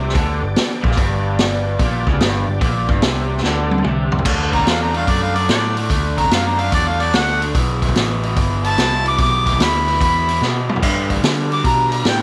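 A distant, roomy harmonica with vibrato and slapback echo takes the melody from 4.5 seconds, its overdriven tone riding high over a swaggering, raunchy blend of blues rock power trio and southern rock in G major at 146 BPM with a swung eighth-note feel. Underneath, a raw, lo-fi garage guitar drives a bright, double-tracked, overdriven riff through the whole excerpt alongside a growly, punchy picked electric bass. A vintage acoustic drum kit sits up front with dark cymbals, a medium-tuned snare and a punchy kick, rolling in with a fill just before the harmonica's entrance and another near 10.4 seconds. For the opening seconds a thick, gritty tonewheel organ holds sustained chords in the background through a slow rotary speaker and chorus vibrato, dropping out at 4.2 seconds. A very quiet, distorted lead guitar adds a bluesy second line beneath the harmonica as the chords move from G through D and E minor and back to G, all in a small room with light reverb.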